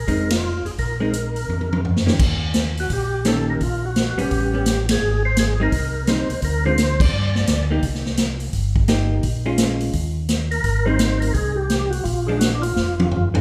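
A moderate recital-hall reverb lends this bluesy, soulful soul jazz organ trio excerpt the open air of a church or concert hall, swinging in 4/4 at 170 BPM. A fat, percussive tonewheel organ carries the melody from the start, lightly overdriven through chorus vibrato and a slow rotary speaker, pausing at 7.7 seconds before returning at 10.5 seconds. Beneath it, a second tonewheel organ plays a round, dark bass line with the same overdrive, chorus vibrato and slow rotary swirl. A clean, compressed hollow-body electric guitar adds picked accompaniment with a dusky tone, while a swinging big-band drum kit with a punchy kick, medium-tuned snare and rolled-off top sits up front yet sounds roomy. The band hits accents together, the drums throw in fills to close the opening passage and the end, and the harmony moves from Bb9sus4 through Eb7, Abmaj7 and Cm7 before settling on a Bb7 chord with its third omitted.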